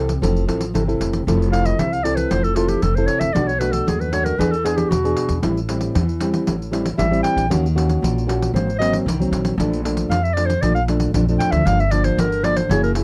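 Thumb-plucked nylon-string guitar with audible finger squeak and a woody, thumpy pizzicato upright bass on gut strings open this lively, festive samba-and-choro excerpt, joined almost at once by a jingly, band-limited pandeiro played with hard hands, before a smooth-topped warm clarinet enters at 1.5 seconds with a classical-style solo, captured in a dry, close 1970s-style studio sound with light reverb.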